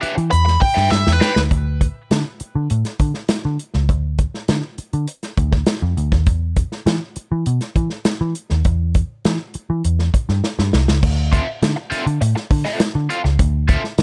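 Cool and hypnotic, this funk excerpt in D dorian moves at 101 BPM in a straight 4/4, opening on an Em7 where a nasal, overdriven lead guitar with a parked wah and tape echo plays a brief solo from 0.3 seconds beside a crunchy wah-treated rhythm guitar, both dropping out by 1.4 seconds. A dark, round, foam-muted picked bass and a warm soul drum kit, with dark cymbals, a medium-tuned snare and a tight kick heard distantly in a roomy, tight booth, carry the long chordless stretch that follows, with drum fills arriving at 0.9 and 10.4 seconds. The crunchy guitar returns at 11.3 seconds over a Dm9, all set in a small room ambience.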